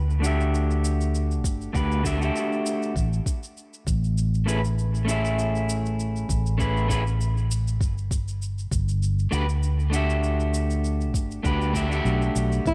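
Dark, lightly reverberant production frames this sunny, smooth sunset chillout excerpt at 99 BPM in 4/4 with a gentle sixteenth-note swing. A round, amped fingered electric bass opens it, joined by a tape-warm electronic shaker in studio reverb and an up-front, slightly broken-up picked electric guitar through a low-pass filter and tape echo, and a soft electronic kick enters at 1.4 s as the chords move from Gmaj7(no3) to Amaj7 and back to Gmaj7, before a fingerpicked acoustic flamenco guitar sounds a single E4 at 12.7 s.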